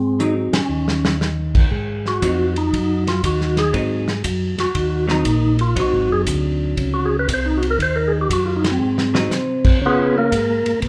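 Lightly reverberant and up-front, this greasy, bluesy soul jazz organ trio excerpt swings at 118 BPM in Ab mixolydian, with a flute-like tonewheel organ carrying the melody through a fast rotary speaker with key click and third-harmonic percussion, a smooth tonewheel organ bass on slow rotary, a clean, compressed hollow-body electric guitar picking its accompaniment, and a dry soul drum kit with a tight kick and dark cymbals. The band hits an accent at 0.4 s before the organ solo takes over at 1.7 s over Ab7, with a drum fill at 8.8 s and a move to Db7 near the end.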